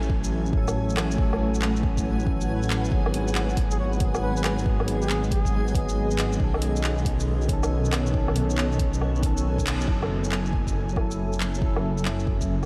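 A melancholic, nocturnal future garage excerpt at 138 BPM in F# dorian opens with a clean tine electric piano through a combo amp with chorus, filtering and delay, a blurred granular cloud pad, a menacing, saturated detuned saw bass up front, a layered garage kit of handclaps, hi-hat, shaker and woodblock, a deep electronic kick, and a reversed, bright swelling texture in the background. The piano, pad and bass breathe with sidechain pumping, while a veiled trumpet with a bucket mute plays a mellow solo line with light vibrato from 3.7 to 5.7 seconds, drifting in diffuse delay. The backwards texture stops at 9.9 seconds, just after a band accent, as the harmony settles on F#m7 in a dreamy mix soaked in cathedral reverb.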